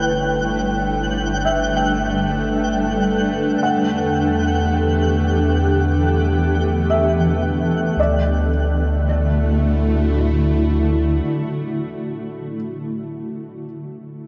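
A dark, cloudy granular pad sits up front in this serene ambient excerpt, holding blurred, detuned, full-bodied chords that evolve under a filter sweep through the opening stretch. At 55 BPM in D major, the harmony drifts from Gmaj9 to Em11 before settling on D. A deep, round sub bass anchors the low end, while a string-like drone with vibrato adds a tense, bright edge. A felt-muted upright piano plays soft, mellow, intimate arpeggios through a tape echo. High above, a twinkling granular texture sparkles with octave-up shimmer until it stops at 8.0 seconds, and the piano lingers last, closing at 14.3 seconds inside a huge, wet reverb.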